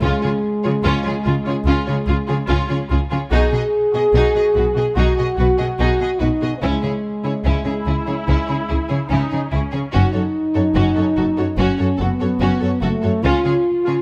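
From the first moment, a French horn section and the full strings sound together in this relentless, epic orchestral film-score excerpt: up-front horns hold soft-attacked sustained chords over rich, bowed cellos and smooth, even double basses carrying the bass. Above them, a distant, lush violin section sings the expressive melody with vibrato and portamento, supported by a focused second violin line and a warm viola accompaniment. Close, detailed microphones and light reverb frame the ensemble, and the double basses stop at 13.3 seconds while the melody and horns hold on to 14.0 seconds.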